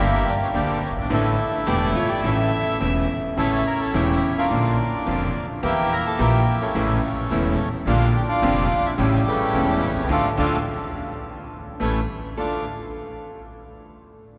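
Sultry and dramatic, this short excerpt of tango moves at 107 BPM in 4/4 with a rubato feel, set in D harmonic minor. A reedy, vintage bandoneon carries the melody up front, while a bright, brilliant concert grand piano with deep bass supplies the accompaniment and a second, close-miked bandoneon adds very quiet, dry stabs underneath. A woody, thumpy upright bass with gut strings plays pizzicato in the low register. A nasal, bowed violin with light vibrato and a dark, clean hollow-body jazz guitar sit distant in the background as a second line, heard from 1.7 to 3.2 seconds and again briefly at the close. The chords wander through Gm, Asus4, Bb and Edim before landing on Dm at 10.1 seconds, where a band accent runs until 12.4 seconds. A long cathedral reverb fills the church-like space, and the sound carries a dulled, band-limited top end.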